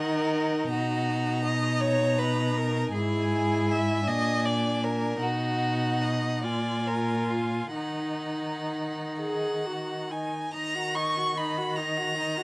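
A 6/8 pulse, stretched and loosened with rubato, carries this slow, solemn and yearning romantic movement for string quartet, cut from a longer piece. Two clear violins, one singing the high melody and the other tracing a lower second line, join a rich viola accompaniment and a cello bass that sounds distant yet sits up front. All four bowed parts play with smooth, even vibrato in light reverb. A new section begins at 10.5 seconds.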